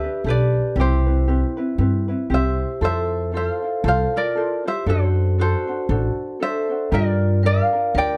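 Relaxed and dreamy, this short Hawaiian excerpt swings gently at 117 BPM in F major, with a fingerpicked tenor ukulele carrying the melody up front while a dry, ringing vibraphone played with medium hard mallets and its motor off adds a second line, a bright thumb-plucked ukulele plucks out accompaniment, and a woody, thumpy pizzicato upright bass anchors everything close and detailed in a room with little reverb as the chords move from Gadd9 through Fmaj7 and D7/F# to Gm7.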